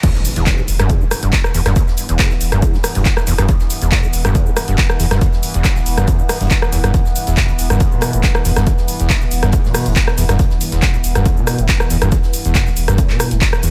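A punchy, up-front electronic kick drives this relentless, industrial peak-time techno drop in E minor at 139 BPM, joined by a squelchy, resonant acid bass riff that is distorted, sampler-gritty and pumping against the beat, and a thick, saturated sub bass holding E1. An analog drum machine adds crash, handclaps, hi-hat, rim click and shaker, while a very quiet, airy big-band kit contributes hi-hat and snare, and a faint electronic impact marks the first 1.8 seconds. From 1.2 seconds a moody, detuned ambient pad drones quietly with chorus and its own reverb, in a dry mix cut from a longer track.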